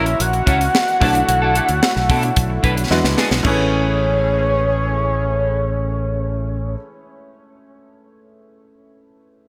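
Glossy and upbeat, this short clip of polished 1980s jazz-funk pop moves at 111 BPM in a straight 4/4, centred on A major. A fat, detuned analog lead carries the melody up front with vibrato and a touch of delay, while a punchy fingered electric bass, bright and direct through an envelope filter, drives the low end beside a tight, dry funk kit with a high-tuned snare. The drums play only until 3.6 s, finishing with a fill from 2.9 s that leads the chords from F#7 and Bm11 through E7 into Amaj7 at 3.4 s. Further back, a dark, clean picked electric guitar plays a chorused riff, a shimmering pulse-width pad holds soft-attack chords, and a clear, somewhat worn grand piano accompanies, ringing on alone until 9.5 s. The bright digital production sits in a lush hall reverb that gives the glossy mix a sense of space.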